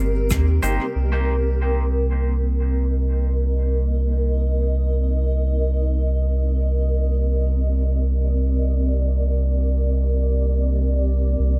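This ambient dub piece, cut from a longer work, sets a hazy, meditative mood over a sustained Cm7 chord. A granular cloud pad holds mellow, blurred chords throughout, its detuned unison voices evolving slowly inside their own reverb. Beneath it, a soft dub sub bass sits up front with a deep, round tone that sustains for the full length. Near 0.3 seconds a layered electronic kick sounds briefly in the background, alongside a low-pass filtered shaker and rim click with a brushed, acoustic feel and dub echo. A semi-hollow electric guitar adds bright, clean, picked stabs at about 0.6 seconds, coloured by phaser and dub echo. From 1.0 seconds a filter sweep passes over the pad, all within a small room reverb.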